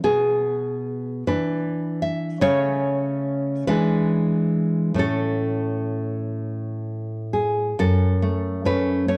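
A solo nylon-string guitar opens the recording, fingerpicked and placed up front, with a deep, classical body to its tone. This is a tender, romantic piece in a lilting triple-based metre, played with free, breathing rubato that lets the phrases stretch at a slow pace. The harmony moves from an E7 over B through A/C# and E7 before settling on A at 5.0 seconds, then turns toward F#m at 7.8 seconds as a new section begins. The guitar covers a span from a low F# up to a high E, giving the short passage both a resonant bass and a singing upper voice. A moderate reverb, like a scoring stage, surrounds the instrument, and the dark, warm production adds to its tender mood. The recording is cut from a longer piece and ends at 9.2 seconds.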